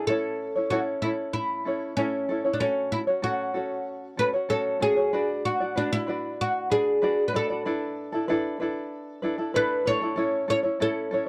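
Easy-going and sunny, this pop excerpt sets a bright, woody, plectrum-plucked fretless oud with double strings on the melody over a light, fingerpicked tenor ukulele accompaniment, both sitting up front in a dry, close 1970s-style studio sound touched with light reverb as the chords move from A through F#m, Bm and E7sus4 before returning to A at 10.2 seconds.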